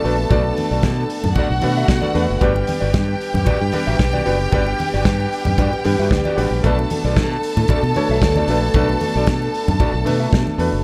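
A dry recording with a faint mains hum carries this driving, danceable disco excerpt, cut from a longer piece. A bright fingered electric bass and a dark soul drum kit with a tight kick sit at the front, with low-tuned congas in the background, while a clear grand piano and a clean electric guitar fill out the accompaniment over Bm7 and Gmaj7 chords. A lush, bowed string section carries a second line above mellow, distant French horn chords, and the piano plays a fill from 5.6 to 6.6 seconds.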